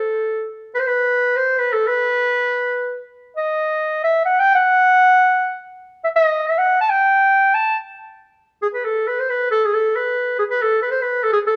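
Close, detailed microphones capture a moderate recital-hall reverb in this short excerpt of Balkan folk, cut from a longer piece. A lone clarinet, warm yet distant and roomy, sits up front and plays in a classical style in B phrygian dominant at 137 BPM in a straight 2/4, its line fiery and bittersweet. It carries the full 11.6 seconds, moving into a new section at 8.6 seconds.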